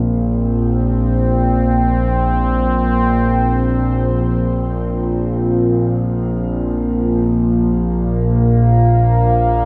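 A sweeping, resonant pad carries the sustained chords in this dark ambient drone, its sawtooth and triangle tones wave-folded and opened by a filter swell, with chorus, phaser and shimmer reverb coloring those chords between Bb2 and C4. Beneath it, a mellow analog drone holds from Bb1 to Bb2, its vintage sawtooth and pulse-wave sound warbling through pulse-width modulation and chorus. Both parts sit up front, rising with slow attacks and fading on long releases as they evolve across the full 9.7 seconds. The music moves in free time over a single Bb5 chord, tuned to A4 = 439 Hz. A wet cathedral reverb with a 6.0-second decay surrounds the sound, giving this fragment of a longer piece a dark, cavernous mood.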